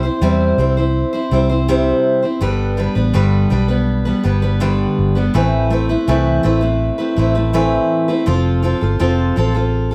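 A picked steel-string acoustic guitar sits up front in this short excerpt of acoustic pop, its full-bodied jumbo tone carrying a plate reverb as it plays accompaniment from G2 up to C5 throughout the 9.9 seconds. Beneath it, a vintage muted fingered electric bass supplies a dark, round and punchy low end, its foam-muted, amped sound ranging from F1 to E2. The mood is sunny and heartfelt, moving at a relaxed 82 BPM in 4/4 with a straight feel in C major. The harmony steps from C to G at 2.4 seconds, to Amadd9 at 5.3 seconds and on to F at 8.3 seconds. Both parts play together from start to finish in a moderate studio room with a short reverb tail.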